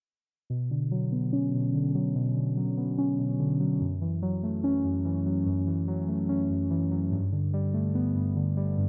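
Muted, felt-like synth keys with a dark noise-layered edge sit up front from 0.5 s, carrying a cold, menacing half-time hip hop fragment at 145 BPM through Bmadd9, F#m7 and Gadd9 chords, softened by chorus and a low-pass filter sweep and bathed in a lush hall reverb until 8.9 s.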